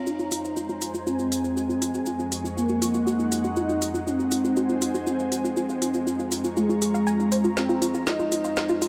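Melodic techno at 120 BPM in F phrygian, driving and cinematic, where a smooth, resonant sawtooth lead with vibrato and 12-bit sampler grit carries the melody over tight, detuned sequenced arpeggios colored by cassette tape and dub echo, both under filter sweeps through a build-up, while a tense, string-like bowed drone, an ethereal airy pad, a grainy cabasa and a deep house kit with woody snare and smooth hats, entering at 0.3 s and closing on a fill from 7.6 s, sit inside a huge ambient reverb and a dark mix over a Fm, Ebm7 and Bbm progression.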